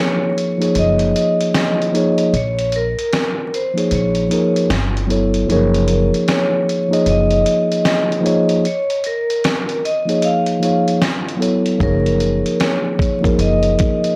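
Lo-fi hip hop with a nostalgic, hazy mood, this short excerpt moves in a relaxed swung 4/4 over lush chords such as Gbmaj7 and Bbm7. A mellow tine electric piano carries the accompaniment up front, clean and direct, while a vibraphone played with medium hard mallets sings the melody in a bright, metallic, ringing voice with slow motor vibrato, both softened by a low-pass filter. A dusty, sampler-style drum kit enters at 0.4 seconds with finger snaps, hi-hat, a thumpy kick and a fat snare, compressed and gritty as if re-recorded in a large room. An upright bass joins at 0.8 seconds, plucked on gut strings with a woody, dark tone and a touch of transformer saturation, sitting up front until it drops out at 13.7 seconds. The whole track has a dry, grainy hardware character with moderate studio reverb and a bed of vinyl crackle.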